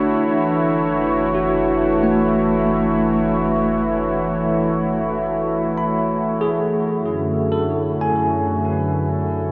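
Ambient, serene and melancholic, this short cut from a longer piece floats in free time within a vast, echoing cathedral space, where a warbling, detuned analog pad holds sustained chords up front with chorus. An overdriven tine electric piano spins bright, barky arpeggios through fast tremolo and tape echo, while a deep, round sine sub bass fades out by 6.9 seconds. A mellow flugelhorn with light vibrato then fades in, carrying a distant melody in the background from 7.8 seconds, touched with tape echo.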